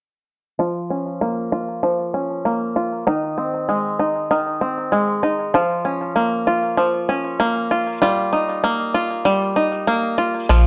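Autumnal and intimate, this short folktronica fragment, cut from a longer piece, rests on a steady, straight four-beat pulse. A bright, twangy bluegrass banjo, played with fingerpicks, sits up front and carries the music with percussive arpeggios from 0.6 seconds. A low-pass filter and delay shape its acoustic tone, and a filter sweep runs across the banjo for its whole span. The harmony moves from Bbm to Ab, back to Bbm, then settles on Ebadd9. At 10.5 seconds a deep, round sine sub bass arrives up front with a fast attack and a sustained low note, just as the banjo reaches its close. The sound sits in a moderate studio room with a short reverb tail, and its top end is gently rolled off, giving the fragment a close feel.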